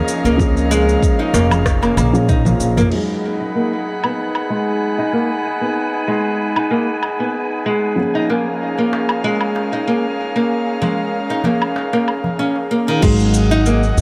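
A fingerpicked nylon-string guitar sits up front with small, warm arpeggios, softened by a low-pass filter and delay and given a filter sweep from 2.9 to 13.0 seconds, over an airy, breathy pad, a felt-muted upright piano that sounds dark and boxy, and a wind-like tuned noise texture in the background. This hypnotic organic downtempo excerpt in G# dorian moves at 95 BPM with a light 16th-note swing, as the pad and piano pump against the sidechain and the chords move from A#m7 to G#m7 and back. An organic electronic drum kit, re-recorded in a large room, with rim clicks, shaker, toms and woodblock runs throughout, while a deep layered electronic kick, a thumpy pizzicato upright bass and a crisp metal-shell darbuka drop in and out, with a drum fill between 2.0 and 2.9 seconds, the whole mix sitting in a light small room reverb.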